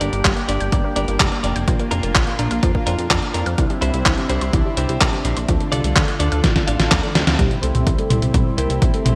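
A smooth, detuned analog pad holds sustained chords in the background from the very start, alongside a round, nasal pluck playing arpeggios with chorus and delay, twangy direct-recorded clean guitar stabs through a low-pass filter, and a glossy, chorused synth bass with tube saturation. This is danceable, bittersweet italo disco at 126 BPM in 4/4, moving through Gm, Bb, Cadd9 and Dm before settling on C. A clean 12-bit drum machine sits up front with handclaps, hi-hat, a medium-tuned snare and toms treated with gated reverb, while a punchy, overdriven electronic kick drives the beat from 0.2 seconds. A drum fill and a band accent lead into a new section at 7.4 seconds, where a thick, dark unison lead with a sub octave enters carrying the melody through digital delay, shaped by a filter sweep. The bright 1980s-style digital production is bathed in a moderate, lush hall reverb, and the clip is cut from a longer piece.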